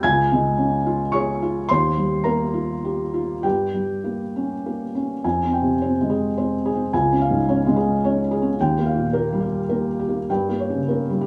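A soft, intimate sound opens this short cut from a longer neoclassical minimalist piano piece: a felt-muted upright piano sits up front in a stone room whose moderate reverb, about 1.1 seconds long, adds a small-room ambience. The mood is melancholic and wistful, in F minor and 3/4 time, with a rubato feel that drifts between roughly 98 and 109 BPM. The piano plays alone from start to finish, its mellow, natural tone spanning from Db2 up to Ab6. The harmony moves through Db, Ebadd9 and Gdim in the opening passage, then turns to Fmadd9 at 5.2 seconds before cycling back through Db, Ebadd9 and Gdim. The muted felt gives every chord a hushed, close quality, as if heard from beside the instrument.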